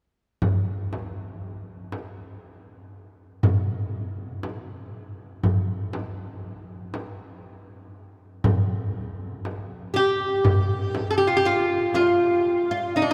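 Longing and hypnotic, this excerpt from a Turkish makam ensemble piece moves in a straight 10/8, opening with a crisp, deep metal-shell darbuka played with soft hands beside a close, up-front frame drum. Near 10 seconds a bright, woody fretless oud with double strings takes a second line, and a nasal, metallic lap resonator guitar played with slide and fingerpicks carries the melody up front. The frame drum stops around 12.2 seconds, and a drenched cathedral reverb with a 5.4-second decay surrounds the sound.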